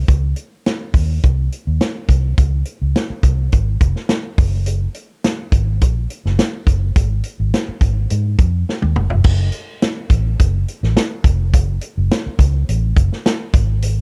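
This lush 1970s-style soul excerpt moves at 105 BPM in a straight 4/4, with a warm, romantic mood. A vintage drum kit sits up front, recorded acoustically in a small room, with a punchy kick, a medium-tuned snare, hi-hat, toms and dark crash cymbals whose rolled-off top keeps the sound natural and warm. Alongside it, a muted fingered electric bass, also up front, plays a round, foam-muted and amped line in the low register between F1 and Ab2. A drum fill from 8.7 to 9.3 seconds leads into a new section that carries the groove on to the end. The production is dry and dark, giving the pair a close, intimate feel.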